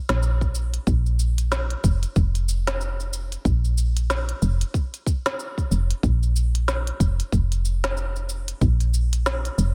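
A loose 4/4 groove with a 59% swing on the sixteenths gives this short cut from a longer organic downtempo piece its gently rolling, hypnotic pull. An organic electronic drum kit sits back in the mix, its crisp hats, shaker and woody snare carrying a tape-saturated glow and the close ambience of a small room. A tight electronic kick enters at 0.4 seconds and stays up front until 8.8 seconds, adding a produced weight beneath the kit. The FM bass is the focal point, soft, round and dark, with a fast attack that then decays as it moves between F1 and Bb1. Light reverb lends the whole short passage a mystical, slightly hazy atmosphere.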